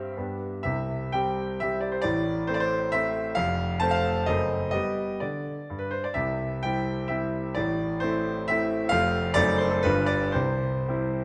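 A clear concert grand piano plays alone from the start, a graceful, rustic romantic dance in 3/4 with dotted rhythms, drifting with rubato between 106 and 144 BPM in C major. Its open tone, deep bass and up-front presence sit in a wet recital hall reverb, as the harmony moves from C through A minor and F to a diminished chord on F sharp before resolving via G7 back to C at 10.3 seconds. This brief cut is taken from a longer piece.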